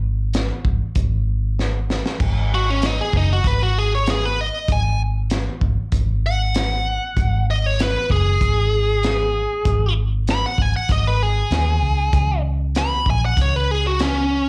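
A straight 4/4 groove at 97 BPM drives this smoky, brooding soul blues in G# minor, where a round, foam-muted vintage fingered bass and a crunchy, gritty breakbeat kit with dark cymbals and a high-tuned snare set the pulse, a drum fill at 1.6 seconds leads into a biting, overdriven lead guitar solo with slapback echo from 2.2 seconds, and the performance comes across as a live club gig heard through the venue's PA.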